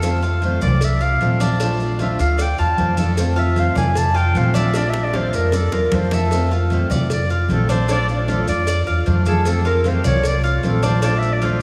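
A classical-style clarinet solo with analog delay enters at 0.5 s and floats over a danceable Cuban son and guajira groove at 153 BPM in F major, alternating F6 and Bbmaj7, with a woody, thumpy pizzicato upright bass up front, metallic double-stringed tres arpeggios, a boxy fingerpicked swing-style acoustic guitar, bright distant congas, tight high-tuned cowbell and bongos, and grainy maracas, all bathed in a dreamy, lush hall reverb, with a drum fill from 4.7 to 6.3 s.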